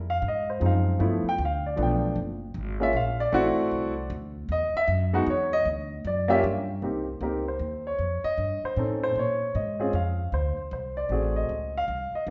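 Warm and playful, this swinging jazz waltz moves at 154 BPM in 3/4, cut from a longer piece and opening with a grand piano solo over chords such as Fm7, Gbmaj7 and Emaj7sus2. Up front sits a natural-sounding grand piano carrying the melody, alongside a woody, thumpy pizzicato upright bass on gut strings with a dark tone. The pair play live in one large studio, wrapped in a wet reverb with a mellow top end, and the second section, beginning at 6.8 seconds, moves through Cm7, F7b13 and D7#11 to close on Dbmaj9.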